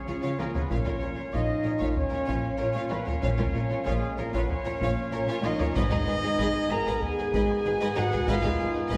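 A straight 4/4 pulse at 95 BPM is driven by a close taiko ensemble struck with heavy sticks from 0.5 seconds, in this heroic, majestic fragment of an epic orchestral film score that moves from Db to Bb minor and arrives on Ab minor at 5.8 seconds, where a very quiet, dry timpani briefly joins. Dark French horns hold sustained chords, supported by a very quiet, tight trombone section and a distant woodwind section, while a mellow, punchy trumpet adds stabs and an airy silver flute traces a second line in the background. Lush bowed strings fill out the texture: a focused violin section carries the melody, a bright, intense violin section plays a second line, a very quiet viola section gives smooth accompaniment, and cellos and clear double basses hold the bass, set within a wet scoring-stage reverb heard from further back in the room.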